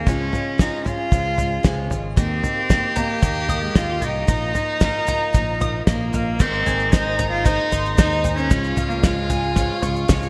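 Uplifting and nostalgic, this indie folk excerpt moves at 114 BPM in a straight 4/4 in Ab major, its arrangement building as new parts join. A close, intimate cello carries the melody up front with an airy, sul tasto bow and light vibrato until 9.6 seconds, over a cloth-damped drum kit whose fat snare, tight kick and dark cymbals sound thuddy and dry. A fingered electric bass anchors the low end, while a grainy egg shaker sits in the background. A bright, full-bodied fingerpicked steel-string guitar with finger squeak and ensemble chorus plays only until 2.2 seconds, and a boxy, picked old ladder-braced guitar with lush chorus continues throughout. At 2.2 seconds a dark, woody fiddle adds a second line, a bowl-back mandolin picks arpeggios high on doubled strings, and a very quiet tonewheel organ holds chords through a slow rotary speaker. Light reverb and a bright 1980s-style digital production frame the chords as they move from Db through Eb and Bbsus4 to Abadd9 and back to Db.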